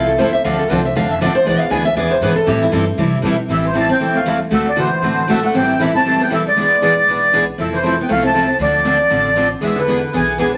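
A bittersweet, virtuosic slice of jazz manouche swings at 235 BPM in A minor, cut from a longer piece. For the first 3.5 seconds a bright, picked steel-string acoustic guitar takes a solo with fresh strings and audible finger squeak, carrying a second line over two more acoustic guitars that play accompaniment: one with a similar bright, concert-grade ring, the other full-bodied and jumbo-sized, sitting in the background. Beneath them a pizzicato upright bass on gut strings adds a woody, dark, thumpy low end. At 3.5 seconds a reedy accordion enters up front with the melody, its light tremolo tuning giving a sweet, vintage, band-limited character. The harmony moves through minor-key changes such as Dm7, E7, Am7 and Fmaj7, all bathed in a wet studio reverb.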